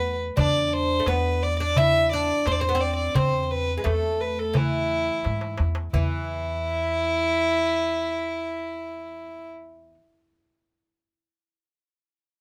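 Arabic maqam ensemble music with a melancholic, soulful mood, in which a single bowed violin carries the melody up front with a rich, pure, floating tone, soft attack and a distant sul tasto color. A deep, woody fretless oud plucked with a plectrum on double strings plays a second line beneath it, while a thumpy pizzicato upright bass with steel strings anchors the low end. A crisp, close and dry metal-shelled darbuka struck with hard hands enters at 0.4 seconds, plays a fill from 5.2 to 5.9 seconds and stops at 6.3 seconds, all within light reverb in this fragment of a longer piece.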